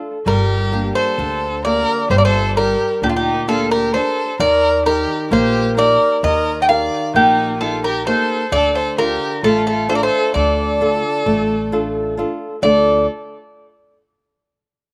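A fingerpicked flamenco guitar, up front with audible finger squeak, opens this wistful, melancholic stretch of Greek folk music in 9/8 at 131 BPM in D Phrygian, joined at 0.3 s by a metallic, double-strung bouzouki carrying the melody up front, a focused, smooth-topped bowed violin with vibrato on a second line, and a woody, growly pizzicato upright bass; the guitar, bouzouki and violin each carry a slapback echo in a dry, open-air sound as the harmony moves from Gm through Eb to Dm.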